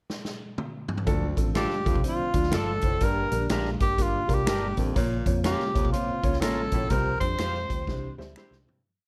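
A swung 4/4 groove at 123 BPM drives this joyful, uplifting piece of uptempo 1960s-style soul, as a punchy, up-front big-band drum kit opens with a fill before the full band arrives at 1.1 seconds, moving through Dm, Gm, Bbm and Csus4 to C. A round, foam-muted bass plays a syncopated line with ghost notes and slides beneath a woody upright piano in eighth-note chords, a flute-like organ pad, a compressed background guitar figure with subtle chorus and low baritone sax punctuation, with twangy guitar chops on the backbeat and close, dry finger snaps joining at 1.6 seconds. A breathy, whispered tenor saxophone carries hook phrases with scooped notes up front in light studio reverb, and the short piece fades out from 6.9 seconds under a closing drum fill.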